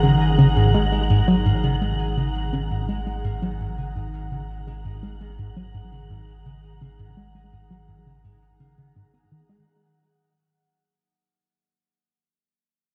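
A straight, steady 4/4 pulse is set by a tight sequenced synth riff, its detuned sawtooth and square tone plucked by the filter and coloured with chorus and tape echo while a filter sweep runs across it. This is ambient, sequencer-driven space music with a mysterious, hypnotic mood, resting on a single G#sus2 chord. A lush, thick unison pad holds sustained chords around it, and a round, dark analog bass anchors the low end on one deep note. A breathy, wind-like tuned noise texture hangs high above, while a fingerpicked concert harp plays ringing arpeggios through tape echo in the background. The echo-heavy mix sits in a moderate spring reverb and fades out; the other parts stop near 9.7 seconds, leaving the harp alone until 12.0 seconds in this excerpt cut from a longer piece.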